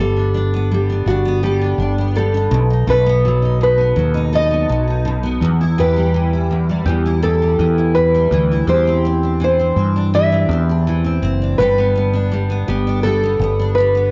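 A mellow fretless electric bass sits up front, its dark, round and direct tone moving between F#1 and G2 beneath this easy-going acoustic pop fragment, cut from a longer piece. In G major at a relaxed 83 BPM in a straight 4/4, the passage has a carefree mood, with chords moving from Gadd9 to B7, Em and Cadd9/E before settling back on Gadd9 at 11.6 seconds. A double-tracked, picked steel-string acoustic guitar supplies a full-bodied dreadnought accompaniment that is also placed up front. Above it, a small-sounding fingerpicked nylon-string guitar carries the melody between F#4 and E5. Both guitars have a cassette-tape character, and the whole home recording sits in a moderate spring reverb along with studio ambience.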